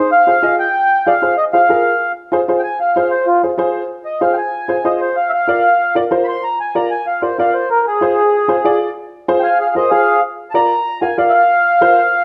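Latin music with a passionate, fiery mood, cut from a longer piece and moving at a brisk pace in a straight four. An up-front accordion carries the melody, its reedy, smooth voice colored by a tone chamber and a slow beating between reeds. An upright piano, also up front, accompanies in a woody, slightly detuned voice that sits lower in level than the accordion. From 2.6 seconds the accordion takes a solo over harmony that alternates between F minor and B-flat over F. A large studio reverb of moderate depth wraps the pair in a dark, warm production.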